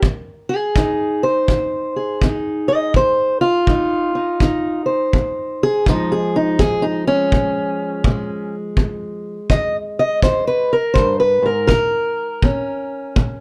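A light reverb frames this mournful, smoky acoustic country blues fragment at 82 BPM in swung 4/4 and F minor, where a dark, boxy fingerpicked parlour steel-string guitar carries the melody with audible finger squeak over Fm7, Bbm7, Fm and Bbm, joined up front by a tight, roomy kick drum for the full 13.4 seconds.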